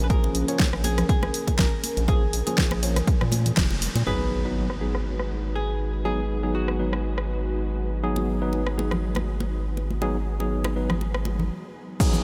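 Soaked in a huge, dreamy reverb, this moody deep house excerpt at 121 BPM in G# dorian swings its 16ths over a punchy, overdriven electronic kick and a fat-snared deep house drum kit. Around them sit bright, dry congas with hard hands, a round analog bass pumping under sidechain, and worn, slightly out-of-tune tine electric piano stabs. A clean, fingered hollow-body jazz guitar melody stops at 7.7 s, beneath which lies a very quiet deep dark ambient pad. An airy, breathy pad enters at 4.7 s, and a background impact and downlifter marks the shift from A#m7 to G#m7 at 4.1 s.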